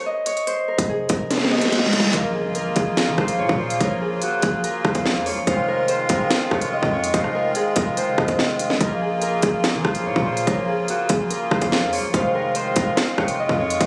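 A phone recording of a room with studio reverb and compression captures this tense, menacing drill excerpt at 144 BPM in half-time, where a bright, ringing fingerpicked Celtic harp with tape echo opens in Bb minor, a drill kit of hard-clipped kick, sharp snare and crisp hats enters up front at 0.3 seconds, a punchy, heavy 808-style bass follows at 0.8 seconds, and after a drum fill and a background reverse cymbal an impact at 2.1 seconds brings in a reedy, sweet accordion holding chords and a hollow, woody clarinet-like synth lead with chorus and vibrato.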